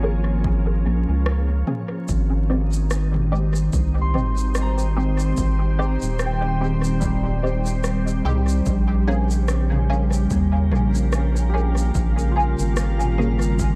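A round, deep analog bass sits up front in this meditative, hazy ambient dub excerpt at 73 BPM in Bb dorian, swinging gently over a Bbm7 to Abmaj7 and back to Bbm7 progression, beneath a calm, organ-like pad with chorus and reverb and muted, dark filtered chord stabs colored by phaser and dub echo. A punchy, overdriven electronic kick enters in the background at 0.4 seconds, followed at 1.3 seconds by an overdriven electronic kit of rim click, shaker and toms with dub echo. From 4.0 seconds a thumb-plucked Celtic harp rings out arpeggios through tape echo in an echo-heavy mix dusted with vinyl crackle.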